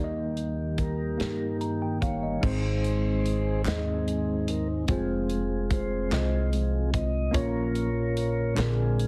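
A slow 6/8 sway at 49 BPM in dotted quarters carries this uplifting, jubilant gospel passage in Ab major, cut from a longer piece, with a worn, slightly out-of-tune tine electric piano and a woody, thumpy pizzicato upright bass moving through Eb, Ab, Fm and Bbm. A flute-like tonewheel organ with key click and slow rotary speaker sits up front and takes a solo from 2.4 seconds, over a punchy studio drum kit with bright cymbals that enters at 0.4 seconds. Crisp group handclaps join in the background at 3.7 seconds, and the whole mix has light reverb and a heavily compressed, radio-like sound.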